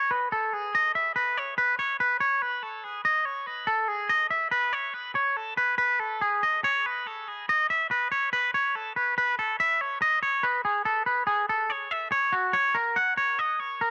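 Recorded at home on cassette with light reverb and a digital ambience, this bright, playful rock passage in A lydian at 142 BPM, cut from a longer piece, features a clean, twangy electric guitar up front, colored by cassette tape and tape echo, playing alone from 0.0 to 13.9 seconds between F#4 and F#5 and moving into a new section at 9.2 seconds.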